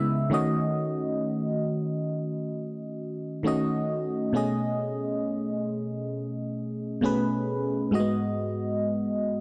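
A lone FM electric piano opens this sensual, moody R&B excerpt, its glassy, bell-like attack and noise layer decaying through chorus and phaser as it sits up front, spanning G#2 to E5. At a slow 67 BPM in 4/4 with a lightly swung sixteenth-note feel, the harmony moves from D#m7b5 to B13 at 4.3 seconds and arrives on G#m7 at 7.9 seconds. Light reverb and digital ambience frame a dry, gritty hardware sound.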